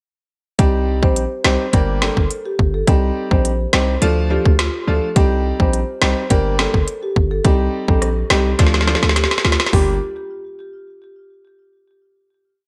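A bright, 1980s-style digital production with light reverb frames this tough and hypnotic dancehall piece in a straight 4/4. Up front, an electronic island pop drum kit carries a tight kick, woody snare, smooth hi-hats, rim clicks and toms, roughened by vintage 12-bit sampler grit and gated reverb, with the syncopated kick answered by the snare. Beneath it, a punchy, heavy 808-style bass with a sine tone, a noise layer and a fast, decaying attack drives a syncopated low line. A clear but worn grand piano adds short, syncopated chords, while a rosewood marimba struck with medium mallets plays a syncopated hook through a digital delay. The chorus cycles through Cm, Gm and Dm, and a drum fill from 8.6 to 9.7 seconds leads into a final Gm chord that closes the piece at 12.0 seconds.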